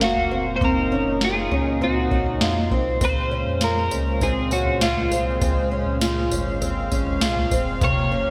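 A slightly broken-up electric guitar carries the melody up front through analog chorus and digital delay, over a shimmering, octave-doubled fingerpicked twelve-string picking arpeggios, a smooth detuned sawtooth pad with tremolo holding Gbmaj7 then Dbmaj7 from 3.0 seconds, a deep sine sub bass, and an overdriven vintage rhythm box with gated reverb that stops at 8.0 seconds, all set in a lush hall for a dreamy, blissful dream pop excerpt with bright 1980s-style digital polish.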